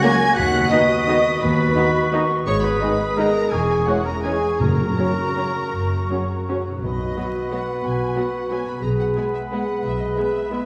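Classical orchestral ballroom waltz in 3/4, festive and sweeping, moving with a rubato feel through a short span cut from a longer piece. A close, expressive violin section carries the melody with vibrato over a second, more distant violin line, a hollow flute, a distant oboe and a roomy clarinet, while violas accompany, cellos and double basses enter at 0.4 s on the bass, the harp rings out arpeggios, and the French horns hold mellow chords beside very quiet trombones, with soft trumpet stabs until 6.6 s. Timpani played with medium mallets on calf heads sound close and dry from 4.6 s to 7.3 s, all set in a wet scoring-stage reverb heard from further back in the room with vinyl crackle.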